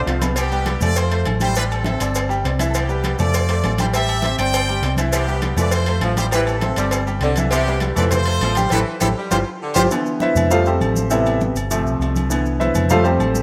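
A brisk straight 4/4 salsa groove at 201 BPM in C major drives this festive, joyful excerpt from a longer piece. A dark, round hollow-body electric bass and a bright, deep-bassed concert grand sit up front, with congas, timbales and agogo bells and a tight cowbell (which stops at 9.8 s) in the background, plus grainy, mellow maracas. A brilliant, punchy horn section with slapback echo carries the melody, and a clear saxophone section with light vibrato adds a second line from 5.1 s. A drum fill and band accent lead into a grand piano solo at 9.9 s, all over a Cmaj7, Fadd9, Am7 and Gsus4 cycle in a rough home demo mix with moderate plate reverb.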